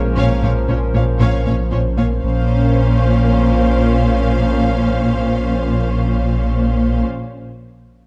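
A deep, saturated sub bass sits up front in this brooding, tense cinematic cue, a hybrid orchestral and electronic film score at 116 BPM in Bb minor that opens on a Bbmadd9 chord. A rubbery square bass riff and a very quiet, felt-muted upright piano sound only briefly, the square bass stopping at 2.1 s. Meanwhile, a hollow, chorused pad, a bright trombone section and a barely audible, distant French horn section hold sustained chords throughout. From 0.2 s lush bowed strings join: violins carry a smooth vibrato melody over a second violin line, with expressive violas, focused cellos and double basses below, the whole cue framed by a dark, moderately reverberant scoring-stage sound.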